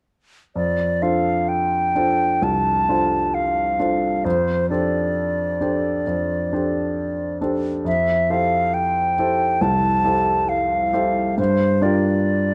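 Classical impressionist duo for concert flute and grand piano, luminous and pastoral in mood, moving at a slow 67 BPM in 4/4 with an elastic, rubato feel in F major. Both instruments enter together at 0.6 seconds and play through to 12.5 seconds, the flute carrying the melody in its upper register from C5 to A5 with a pure, straight tone and crisp attack. The piano supplies accompaniment across a broad span from C2 to C5, its sound clear and intimate, with audible action noise and long sustain lending a polished presence. The harmony drifts through lush extended colours, from F6 to G9sus4 over F, then Fmaj9, before settling on Gm7 near 11.4 seconds. Both parts sit up front in a large studio with moderate reverb, and the overall production is dark and warm. The passage is cut from a longer piece.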